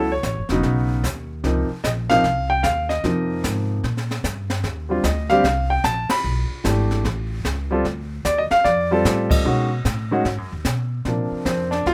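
Jazz piano trio swinging warmly at 150 BPM in 4/4, where a natural-toned baby grand piano carries the melody up front over a woody, pizzicato upright bass with steel strings, while a brushed drum kit with a high-tuned snare, boomy kick, hi-hat, ride and crash enters at 0.2 seconds in a small-room sound, all under light reverb, with the band hitting shared accents at 6.0 and 9.2 seconds as the chords move from Gbm7 through Dbmaj13, Ebmaj13 and B13 to close this section on Bbadd9.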